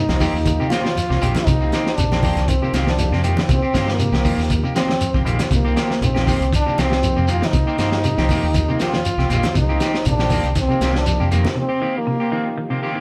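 A clear French horn carries the melody up front with light vibrato and a classical poise over a driving, defiant afrobeat groove at 119 BPM in C minor, resting on a single Cm7 chord. A gritty, saturated breakbeat kit with a tight kick and rolled-off top, a deep, round dub bass, very quiet ringing congas and a grainy shekere push the swung sixteenths. A clean semi-hollow guitar plays arpeggios in the background, a twangy, slightly broken-up guitar with a vibrato effect adds stabs, and a mellow combo organ sits behind them, until the drums, percussion and bass drop out around 11.6 seconds for a break capped by an organ fill at 12.8 seconds in a moderate stone room.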